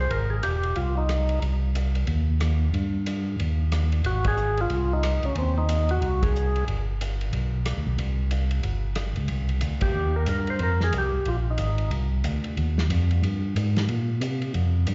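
Smoky and soulful, this soul jazz organ trio cut swings at 183 BPM in 4/4, sitting in C minor and moving through minor-ninth colours such as Fm9 and Cm9. A tonewheel organ carries the bass line for the whole 14.9 seconds, its fat, lightly overdriven tone shaded by chorus vibrato, key click and a slow rotary speaker, placed up front in the mix. Above it, a percussive tonewheel organ plays the melody in short phrases between C4 and C5, entering at 0.0, 4.1 and 9.8 seconds, its clean, full voice marked by second-harmonic percussion, key click, slow rotary swirl and a slapback echo. A dry, dark soul drum kit sits further back, with a tight kick, medium-tuned snare, rim click, hi-hat and ride cymbal, its top end rolled off. The band hits accents together at 4.2, 6.2 and 9.8 seconds, and the whole performance comes across like a live gig heard through the venue's PA, with recital-hall reverb and a muffled upper range.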